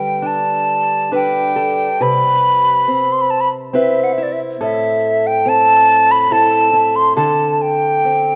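A moderate recital-hall reverb, with a decay of about 1.4 seconds, surrounds this short 8.4-second fragment of a Celtic slow air in G major. It has a tender, pastoral mood, moving at a rubato 69 BPM in 3/4. The wooden flute carries the melody up front, between D5 and C6, with an airy, woody tone, vibrato and a crisp attack. Beside it, a fingerpicked acoustic archtop guitar gives a dark, boxy accompaniment from A2 to B4, and finger squeaks can be heard on the strings. The harmony moves from Gadd9 to Cmaj7 and then Am before settling on a D-rooted chord as the passage breaks off.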